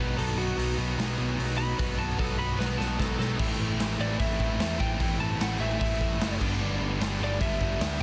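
Opening on a half-time feel, a twangy, slightly broken-up lead guitar solos over three picked rhythm guitars — a cranked stack, a tight distorted one and a very quiet double-tracked one — and a growly overdriven bass, with a raw garage drum kit entering at 0.2 seconds, up front and gritty in a pumping stone room, firing a fill from 2.6 seconds before this aggressive 150 BPM punk rock excerpt shifts at 3.4 seconds from B into a new section moving through Am to G, all under light reverb and a dense, heavily limited master.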